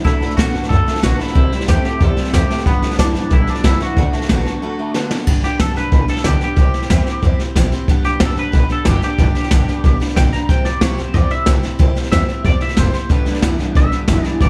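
A brisk straight 4/4 drives this rowdy, retro rockabilly cut at 184 BPM in G major, taken from a longer piece and set in a small room ambience. A jazz brush drum kit sits up front with a boomy kick, medium-tuned snare, dark cymbals and a rolled-off top, entering at 0.1 s, while a woody, thumpy upright bass with gut strings is plucked in the background. A bright, full-bodied dreadnought steel-string acoustic guitar picks the accompaniment throughout, and a slightly broken-up electric guitar through a small old amp plays a low riff with ensemble chorus, dropping out at 5.3 s and returning at 13.1 s. A clean, compressed, fingered twangy electric guitar carries the melody from the start, colored by analog chorus and analog delay, and after a break and a drum fill it moves into a solo from 5.3 s. The chords move from D through C and G before settling into a G and C pattern for the solo.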